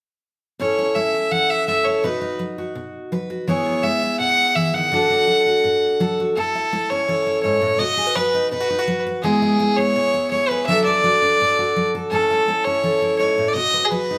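Drenched in the generous reverb of a large studio room where the band plays live, this heartfelt, down-home country excerpt at 167 BPM sets a clear, nasal fiddle singing the melody up front from 0.6 seconds over a full-bodied picked dreadnought acoustic guitar, its finger squeaks audible as it moves through A, B, E and D before the second section arrives at 6.4 seconds.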